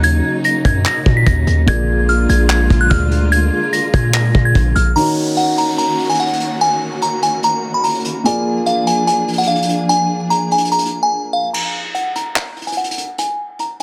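A menacing, brooding trap cut from a longer hip hop piece, moving at 146 BPM in a half-time feel in Eb minor, where a delicate, tinkling synth tine bell carries the melody up front, its warbling FM tone shaded by chorus, a low-pass filter and digital delay. Beneath it a dark, boxy concert grand piano and a lush, bowed string section with expressive vibrato hold the Ebm7 and Bb7 harmony, while a muffled, lo-fi brush kit with a punchy kick, handclaps, hi-hat and crash anchors the groove and a heavy, sine-based 808 hits hard until 5.0 seconds, when an electronic downlifter enters and runs to 8.3 seconds. After a break at 11.1 seconds, the piano and strings fall away and the bell plays over the drums alone under a filter sweep to the close at 13.8 seconds, all within a small room and a dense, heavily limited modern master.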